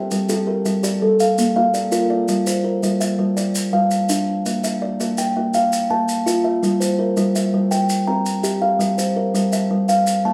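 Hypnotic and trance-like, this cut from a longer southern African traditional piece in 12/8 sets a woody, close-miked kalimba ringing out arpeggios up front, joined until 2.6 seconds by a second, airy kalimba with short notes, while grainy, saturated maracas sit quietly beneath and a live-room studio reverb lends the interlocking mbira-style cycle a modest space as the harmony moves between Gm, Bb and C.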